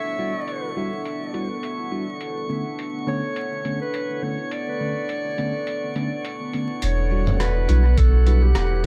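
A clear, smooth-topped clarinet melody with dub echo opens this meditative, deep ambient dub excerpt over a mellow analog pad with chorus and a drifting, glassy harmonics texture, before a bell-like tine electric piano adds filtered, echoing stabs and a muffled, pitched-down sampler-style kit of hi-hat, rim click and toms settles into a swung groove, with a round, up-front sub bass arriving at 6.8 seconds, a very quiet electronic kick at 8.0 seconds, and vinyl crackle and light digital ambience throughout.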